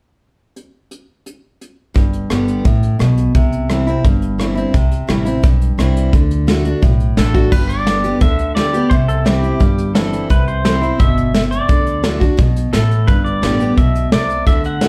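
This sunny, nostalgic slice of honky-tonk and classic country moves at 173 BPM in a straight 4/4, set in G major and cut from a longer piece. A soft brush drum kit opens at 0.6 seconds, sitting up front with a punchy kick, a medium-tuned snare, rim clicks, hi-hat and crash cymbal. Within moments a full-bodied dreadnought steel-string acoustic guitar, also up front with audible finger squeak, joins in picked accompaniment, and a woody pizzicato upright bass anchors the low end through a simple G, C and D progression. At 7.2 seconds a pedal steel guitar enters and soon takes the solo, its clean, twangy, compressed tone shaped by fingerpicks, slide and volume swells, with a slapback echo adding shimmer above the band. The whole group is heard from further back in the room through a wet studio reverb, giving the cut a relaxed, roomy glow.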